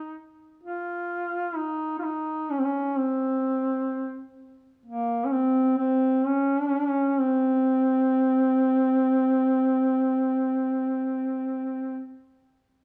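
Light reverb and a small-room ambience surround this brief, free-time Caucasian folk lament in C phrygian, where a dark duduk plays solo from 0.0 to 12.0 seconds between Bb3 and F4, its soft attacks, scooped notes and vibrato giving a mournful, longing voice that sits up front yet sounds distant and roomy.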